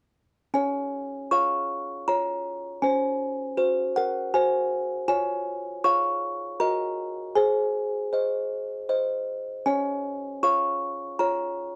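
In a straight 3/4 at 79 BPM, this dreamy, tender classical lullaby in Db major, cut from a longer piece, features a lone, up-front music box playing from 0.5 to 11.8 seconds between Db4 and Db6, its delicate, tinkling, slightly out-of-tune plucks moving from Db through Ab7/Db, Db/F and Ebm/Gb to Ab before settling back on Db, all heard in moderate studio reverb through a worn cassette-tape sound with warbly pitch drift.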